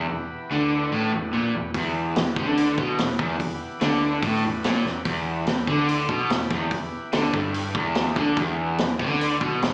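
A crunchy, double-tracked overdriven guitar riff drives this smoky, heavy slice of blues rock and southern rock from the first moment, sitting up front in a low register with spring reverb and slapback echo. Behind it, a gritty tonewheel organ holds thick sustained chords through a slow rotary speaker, while a dark, foam-muted picked bass gives a round, amped bottom in the background, both sounding together with the guitar from the start. At 1.7 seconds a vintage drum kit enters with hi-hat, punchy kick and a medium-tuned snare, its mid-forward, rolled-off sound placed up front in a studio room. The whole passage rests on a single E minor chord in a straight 4/4 feel. The mix carries moderate plate reverb, yet it comes across like a live gig heard through the venue's PA, with club reverb and a small-speaker character. It is cut from a longer piece.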